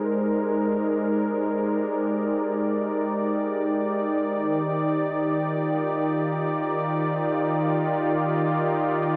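Weightless and luminous, this brief ambient fragment is cut from a longer piece and drifts by for just over nine seconds. A single analog pad carries the whole passage alone, sitting up front with a soft attack and long sustained tones that span from Eb3 to D5. Its detuned sawtooth and triangle layers give it a smooth, vintage glow, while chorus adds a gentle warble. A diffuse ambient delay trails behind the pad, and a huge, wet reverb with a 9.1-second decay lets each chord dissolve into a soft haze. The harmony opens on Abmaj9#11 and settles onto Ebmaj9 at 4.3 seconds.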